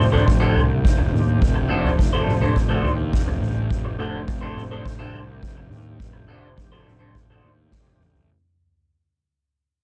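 A straight 4/4 pulse comes from a soft-mallet drum kit of kick, snare and toms, with a punchy kick and a medium-tuned snare that sit up front in a natural hall sound. This short, kaleidoscopic, trippy psychedelic rock passage is cut from a longer piece and begins on an F6 chord. A twangy, slightly broken-up electric guitar through a small old amp plays a bright, lo-fi riff through a phaser until 7.9 seconds. Beneath it, a picked bass adds round, overdriven fuzz low in the register. Set in the background, a percussive tonewheel organ holds fat, clean sustained chords with key click, third harmonic percussion, chorus vibrato and a slow rotary speaker. Light reverb surrounds the music as the whole passage fades out, and a drum fill arrives at 7.7 seconds.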